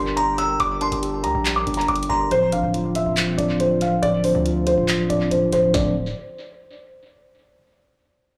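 Hip hop in a trap style at 140 BPM with a half-time feel, this eerie, melancholic fragment in D minor sits slightly below standard pitch, tuned to A4 = 437 Hz. A felt-muted upright piano carries the melody up front, its thick felt giving a dark, intimate tone with audible action noise, softened by a low-pass filter and trailed by tape echo. Beneath it, a clean, mellow tine electric piano supplies filtered accompaniment, while a very quiet, hollow pad with a nasal, flute-like, detuned character holds sustained chords. A distorted 808-style bass brings heavy, saturated, aggressive low end with a fast attack and decay, and the electronic trap kit pairs a hard-clipped kick with a sharp snare, bright hi-hats and handclaps, all touched by tape echo. A delicate, tinkling FM bell line with chorus plays in the background only from 0.2 to 2.3 seconds, and the harmony moves from Gmadd9 to Dm7 at 2.3 seconds, where a filter sweep runs until 5.7 seconds. 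The echo-heavy mix has light reverb and a digital studio ambience, and the excerpt is cut from a longer piece.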